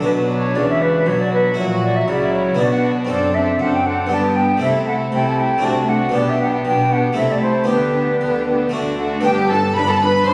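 An airy, distant concert flute leads this brilliant, lively baroque-style concerto movement at 118 BPM in 3/4 with expressive vibrato, joined on the melody by a reedy gut-string violin section while a second violin section, a viola section, a dark cello section, a double bass section and a round, plucked harpsichord fill in beneath, the harmony settling into G major from 3.1 s, the whole captured by a phone in the room with moderate stage reverb, vinyl crackle and compression.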